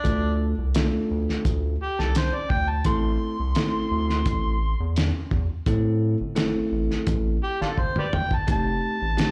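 This straight-eighth soul blues, cut from a longer piece, carries a mournful, soulful mood in a steady 4/4. An overdriven, amplified harmonica takes a solo throughout, gritty with light vibrato, scooped notes and tongue slaps in a jazz style, and it carries a slapback echo. Beneath it a bell-like tine electric piano accompanies in a clean, direct voice, also with slapback echo, while a round, deep analog bass sits dark and sustained. The cloth-damped drum kit sounds thuddy and muffled, with a fat snare, a tight kick and a rolled-off top, and it plays a fill from 7.8 to 8.5 seconds. The harmony moves from Dm to Am at 2.9 seconds and lands on F7 at 8.5 seconds. The recording sounds like a live gig heard through the venue's PA, with club ambience and a small room reverb.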